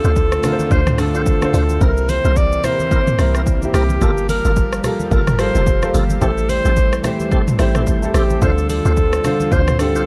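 A breathy, whispered alto saxophone carries the melody up front through a touch of digital delay, over an intimate concert grand piano with audible action noise, a hollow, bouncy log drum bass and a punchy, layered deep house kit of kick, hi-hat, rim click, shaker and toms in this deep, hypnotic amapiano excerpt with a swung groove. Behind them sit a lush, detuned unison pad pumping against the sidechain and a full tonewheel organ playing stabs through slow rotary speaker and chorus vibrato, as the chords move from Dm7 through C7, Gm9 and Am7 back to Dm7. Very quiet, close and dry congas with bright, thin skins come in at 0.4 seconds, and the whole mix stays dark and nearly free of reverb.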